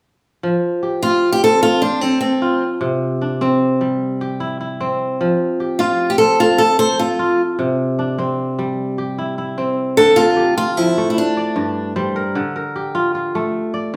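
A flowing 12/8 pulse at 101 BPM (dotted quarters) carries this joyful West African traditional fragment in F major, where a crisp, ringing kora spins fingerpicked arpeggios while a bright steel-string acoustic guitar, with audible finger squeaks, picks the melody up front from 1.0 to 11.9 seconds, the two playing live together in a large studio bathed in wet reverb as the harmony turns from F and C to D minor at 10.0 seconds and G minor at 11.2 seconds.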